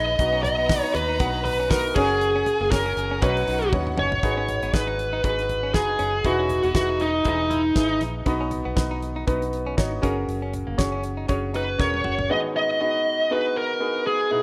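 A rough home-demo mix washed in a moderate plate reverb carries this hopeful, uplifting piano-driven pop excerpt at 119 BPM with a light 16th-note swing, built on a bright, woody upright piano with audible action noise that runs throughout. Up front, a high-gain distorted lead guitar sings the melody, joined at the start by a lush, bowed violin section in the background until 4.2 seconds, while a clean, compressed direct-recorded electric guitar with tremolo plays a riff over a dark, foam-muted fingered bass and a dry 70s drum kit with a fat snare and tight kick. Drum fills mark the turns at 3.7 and 11.8 seconds. The chords move from B through F#add9 and Badd9 to G#m7 and Emaj7, and after the rhythm section stops at 12.3 seconds, the piano and lead guitar finish the passage over G#m7.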